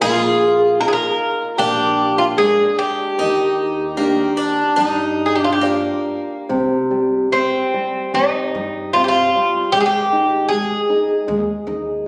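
Mournful and passionate, this fado-style ballad moves with uneven, rubato beats, a short stretch cut from a longer piece. The Irish bouzouki carries the melody up front, its picked double strings giving a mellow yet metallic ring. Beside it, a picked twelve-string acoustic guitar adds a bright, boxy second line with a shimmering, octave-doubled swing, then drops out at 6.4 seconds just before the music settles into a minor key. A thumb-plucked flamenco guitar supplies warm accompaniment, finger squeaks audible on its strings, while a woody, dark upright bass on gut strings thumps pizzicato in the background. The sound is caught on a phone in the room, with a club reverb and a moderate scoring stage reverb lending the room a lingering halo.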